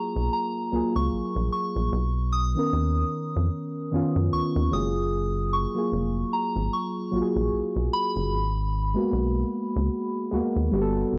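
Swung sixteenths in 4/4 carry this smooth, tender contemporary R&B excerpt, where a rubbery, bouncy square bass sits up front from 0.2 seconds beneath muted, felt-like synth keys colored by chorus and cassette tape, while a pure, gentle FM synth bell melody floats high through chorus, phaser, plate reverb and analog delay over F#maj9, Bmaj9 and G#m9 chords in a home cassette recording with moderate booth ambience.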